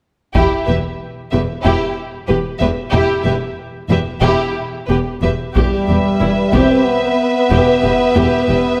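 A straight 4/4 pulse drives this relentless, epic orchestral film-score fragment, where a focused violin section carries the melody over a soft-attack, expressive second violin line, close bowed violas, and lush cellos in the background with smooth double basses anchoring a deep E, while heavy-stick taiko drums play from 0.4 to 1.6 seconds and again from 5.6 seconds, when a punchy, up-front French horn section enters with clear sustained chords, all set in a moderate scoring-stage reverb.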